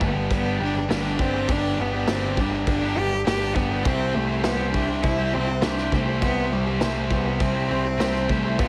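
A dry cut from a longer quiet-loud alternative rock piece, dark and angsty at 101 BPM in a straight 4/4, moving from G to C at 3.9 seconds. A rich, smooth bowed cello with vibrato carries the melody over two picked electric guitars, one overdriven and bright with spring reverb, the other scooped and high-gain with distortion. Beneath them, a growling, overdriven picked bass and a vintage kit played with brushes, with dark cymbals, a medium-tuned snare and a punchy kick, fill out the bottom.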